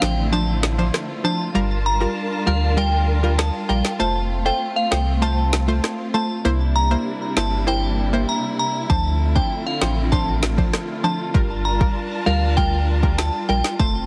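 Dancehall at 98 BPM with a tough, sultry mood, this clip moves through Dm7, Gm7, F and C7 over a thick, saturated sub bass and an up-front electronic drum kit with a deep kick, woody snare and rim click roughened by overdrive. A glassy FM synth bell carries the melody with chorus, phaser and delay, while a round sawtooth analog pluck with a filter sweep and a lush, distant bowed string section both pump against the sidechain. The drums drop out briefly from 8.3 to 8.9 seconds before the groove returns, all under a heavily compressed, radio-like sheen with light reverb.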